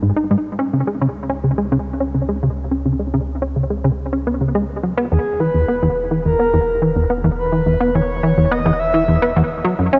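Cosmic and hypnotic, this ambient, sequencer-driven space music passage is built on a punchy, funky analog bass riff of wave-folded sawtooth and pulse tones with ring modulation, treated with analog chorus and delay and carried by a filter sweep, while a deep, round sub bass fades in beneath it. At 5.1 seconds a breathy, flute-like synth lead with a warbling vintage vibrato enters with the melody, also dressed in analog chorus and delay, as the harmony moves through G#5, C#5 and E5. A huge ambient reverb with a long tail surrounds the parts in a vast cosmic space.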